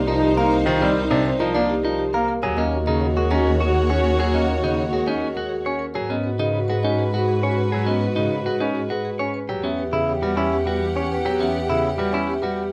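In a straight 3/4 at 102 BPM, this urgent yet meditative minimalist classical excerpt in G# minor is led by a woody, round marimba melody played with soft mallets, while a dark French horn with light vibrato traces a second line in the background. Alongside them, a rich, smooth bowed string section sustains chords, an expressive double bass section carries the bass, a polished grand piano with long sustain accompanies, and a clean, compressed electric guitar picks arpeggios. Light reverb surrounds the ensemble as the harmony moves from Cm9 through D#m7 and G#m7 to Emadd9 over 12.7 seconds.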